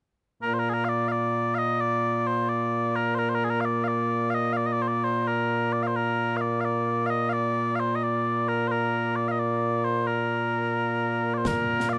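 This short cut of Scottish traditional pipe music moves at a stirring, ceremonial pace of 87 beats per minute in a straight 6/8, set in B-flat major. Small bagpipes carry the melody alone from 0.4 seconds, sitting up front with a mellow, sweet tone, a continuous sound and vibrato. Across the passage the pipe line ranges from low B-flat up to the F near the top of its reach, giving the tune a dignified sweep. Just at 11.4 seconds, a concert snare drum and concert bass drum enter briefly and quietly, bringing bright cymbals and an acoustic live-room sound. The pipes play on until 12.0 seconds, and light reverb adds a touch of space to the whole.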